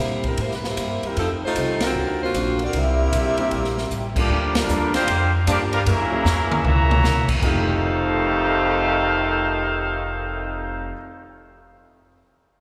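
Swinging eighths drive this energetic, brassy big-band jazz excerpt, in which a tight, up-front saxophone section carries the melody until 3.9 seconds and a brilliant trumpet section takes the melody from 4.2 seconds, while a clear trombone section adds a second line from 2.7 seconds, a woody pizzicato upright bass anchors the low end, a polished drum kit with a punchy kick, crash, ride and hi-hat marks band accents and fills, and a dark picked acoustic guitar and an intimate grand piano sit in the background of a wet church reverb.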